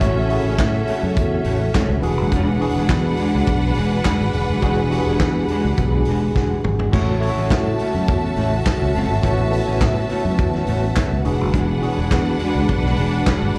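A celebratory disco groove in A major opens at once with the full band, a vintage drum kit with punchy kick, medium-tuned snare, hi-hat, handclaps, toms, crash and dark cymbals, driving a straight 104 BPM beat under a bright, growly fingered electric bass that sits up front. A clear, lush studio string section carries the second line with focused vibrato and slapback echo, while a dark, clean electric guitar with spring reverb adds accompaniment in the background. A worn, slightly out-of-tune tine electric piano, lightly overdriven through built-in speakers, shares the accompaniment. Beneath them a tonewheel organ holds sustained chords with key click and a slow rotary speaker. The harmony moves between A6 and E9, and at 6.1 seconds the electric piano plays a short fill, joined by a drum fill at 6.4 seconds before the groove returns. The joyful passage, cut from a longer piece, sounds like a live gig heard through the venue's PA, with club reverb around the band.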